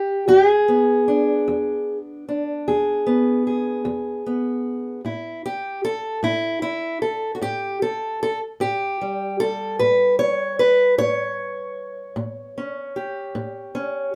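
This acoustic country blues excerpt is soulful and rollicking, moving in a straight 12/8 at 50 beats per minute counted in dotted quarters. A lone fingerpicked steel-string parlour guitar with old strings sits up front, its woody, boxy tone ranging from E2 to C#5 as it moves from E7 to A7 at 5.0 seconds. A moderate studio reverb adds a touch of room around the guitar across the 14.2-second clip, which is cut from a longer piece.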